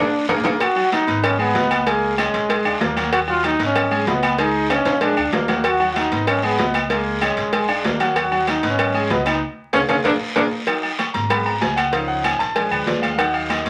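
A punchy, up-front trombone with vibrato carries the melody of this driving, danceable salsa excerpt until 10.4 s, over brilliant concert grand piano chords, a woody, thumpy pizzicato upright bass, ringing timbales and agogo bells, round low-tuned bongos and cowbell, warm background congas, a raspy guiro and very quiet claves, with drum fills and band accents marking the phrases, before the piano takes a solo at 10.7 s, all wrapped in a wet studio reverb and vinyl crackle.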